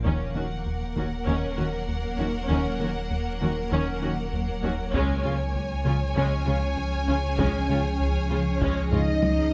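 Cinematic hybrid orchestral and electronic film score, vast and relentless, in which lush bowed violins and intense violas ride over a cloudy, evolving granular pad with its own reverb, a rubbery square-wave bass riff, a deep sub bass, distant cello and double bass sections, a soft round pluck arpeggio and heavy, saturated taiko hits that return at 4.9 seconds, before a dark French horn section enters at 8.9 seconds with a closing drum fill, heard in a moderate concert hall through close, detailed microphones.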